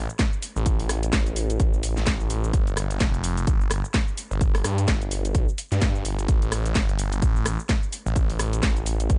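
A thick, swirling detuned saw bass drives this aggressive, swaggering bass house cut at 128 BPM in 4/4, its sawtooth-and-sine tone saturated through tube warmth and a phaser, with a fast attack, sustained notes between F1 and G2, and sidechain pumping. The bass sounds from the first moment, a garage drum kit joins at 0.1 seconds with a cracking snare, hi-hat, rim click and shaker, and an electronic kick drum lands at 0.2 seconds. That kick is the loudest part, a punchy, tape-warm, layered hit. All three parts sit up front, and the kick and drum kit share a produced, small-room character. The 16th notes swing at 58%, giving the groove a loose, strutting bounce, while the overall sound is dry with a dark top end that stops at 10.3 kHz. This is a short cut from a longer piece that holds a single section for its 9.2 seconds.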